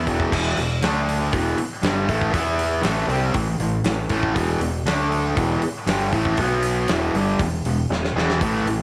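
Blues rock power-trio and southern rock excerpt at 119 BPM in a straight 4/4, gritty and swaggering, with an up-front, double-tracked fuzz guitar riff working power chords around E5, D5, A5 and B5, a growling, bright, overdriven fingered bass beneath it, and a mid-forward acoustic drum kit with a fat snare, tight kick, hi-hat and crash in a roomy studio reverb, capped by a drum fill at 7.9 seconds.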